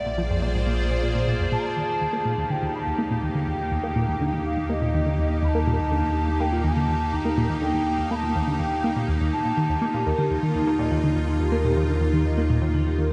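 A tight, driving sequenced synth riff with a nasal, detuned sawtooth bite and chorus and tape echo propels this expansive, luminous fragment of ambient space music at 123 BPM in Eb lydian, over a round, deep analog bass, a bright, morphing wavetable pad holding sustained chords from a Bb7 into Eb, and a distant, hollow wooden flute melody with vibrato that ends at 10.3 s, while a metallic, ringing vibraphone enters with echoing arpeggios at 9.8 s, all set in a vast cathedral reverb.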